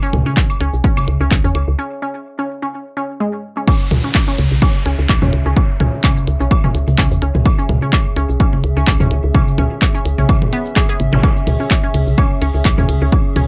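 A lightly reverberant, tape-warm mix with a punchy analog kick and a woody FM bass up front sets the tone for this sparse, quirky minimal techno, cut from a longer piece and moving at 127 BPM in 4/4 with a 55% swing on the 16ths, in C# minor. The bass is soft, round and dark, with fast-attack, decaying notes that pump under the sidechain, while a clicky minimal kit of handclaps, hi-hat, ride and shaker ticks alongside layered electronic toms, congas and woodblock that were re-recorded in a large room. A juicy, squelchy blip pluck carries the riff, its resonant square-and-saw tone with a noise layer and sub octave shaped by a filter sweep, chorus, digital delay and the same sidechain pumping. Deep in the background, a nostalgic, lo-fi pad warbles with detuned, wave-folded and ring-modulated tones, slow-attack and mellow, bathed in chorus and its own reverb. A break arrives at 1.8 seconds, and the drop lands at 3.7 seconds, where an electronic downlifter enters over the C# minor groove, followed later by a quick zap.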